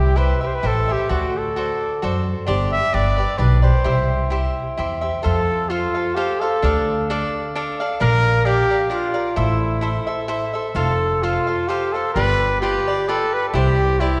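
A mellow trumpet carries the solo melody up front in a classical style, giving this proud, romantic mariachi fragment its voice at 130 BPM in a lightly swung, rubato 3/4. A crisp, picked cavaquinho picks out the chords close beside it, while a woody pizzicato upright bass anchors the low end. The music begins in C major and moves to F major at 5.3 s, settling on a Cadd9, all bathed in the long, wet reverb of a church or concert hall.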